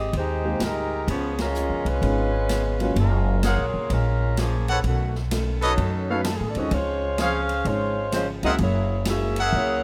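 A tight, up-front saxophone section with vibrato and a soft attack carries the melody in this brassy, energetic big band swing excerpt at 128 BPM, over a woody, thumpy pizzicato upright bass, a drum kit with a punchy kick, medium-tuned snare, hi-hat and ride cymbal, a very quiet, full-bodied picked acoustic guitar and an intimate baby grand piano with audible action noise in the background, while a band accent lands at 1.3 s, a clear trumpet section adds stabs from 3.4 s, and light reverb with small room ambience gives it a rough home demo feel.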